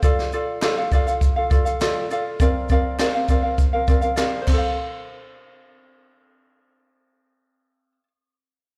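Heard as a live club set through the venue's PA with light reverb, this carefree, sunny acoustic pop piece in F major moves at 101 BPM, accompanied by an up-front, light, fingerpicked ukulele with slapback echo. A roomy, distant brush kit with a boomy kick, high-tuned snare, dark crash cymbal and shaker plays until 4.6 seconds, beneath a very quiet, hollow group handclap.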